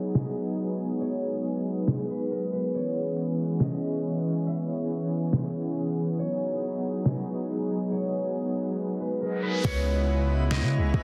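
Spacious and melancholic, this half-time atmospheric cloud-rap fragment sets a ringing, fingerpicked concert harp with tape echo over a warm analog pad of detuned sawtooth chords treated with chorus, tremolo and sidechain pumping. Meanwhile, a reversed, granular backwards swelling texture drifts in the background and an overdriven smooth R&B drum kit with soft kick and deep snare sits up front. A filter sweep and brief silent gaps lead to an electronic riser at 9.3 seconds, and a long, mellow sine 808-style bass arrives at 9.6 seconds as the hi-hats are muted.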